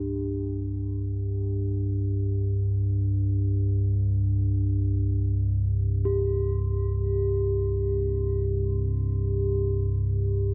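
A deep, rumbling drone sits up front through this haunting 10.5-second excerpt of free-time world meditation music, its dark, slow-attack tone thickened by lush chorus and built-in reverb, while a soft, mellow bronze singing bowl played with a felt mallet rings more quietly beneath with slow metallic beating, both suspended in a vast, echoing space.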